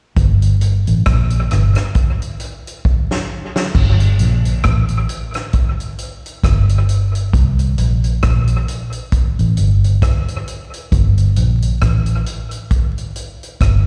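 Serious and laid-back, this roots reggae cut in G minor moves at an unhurried 67 BPM with a swung sixteenth-note feel, as a dark, round, foam-muted vintage electric bass sits up front beside a vintage drum kit with a fat snare, tight kick, rim clicks, hi-hat and crash touched by analog delay, a drum fill from 2.9 to 3.8 seconds ushering in a new section, all heard as a live gig through the venue's PA with recital hall ambience and vinyl crackle.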